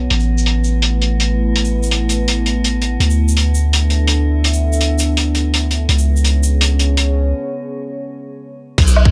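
A small-room ambience frames this heavy, cinematic fragment of half-time drum and bass at 166 BPM, where a deep, moody pad with chorus, reverb and sidechain pumping holds sustained chords over a long sine 808-style bass and an eerie, metallic FM drone that drops out at 7.3 s for a break, while a crunchy, gritty breakbeat kit with dark, rolled-off crash, hi-hat, shaker and woodblock sits up front until an overdriven electronic kick lands at 8.8 s.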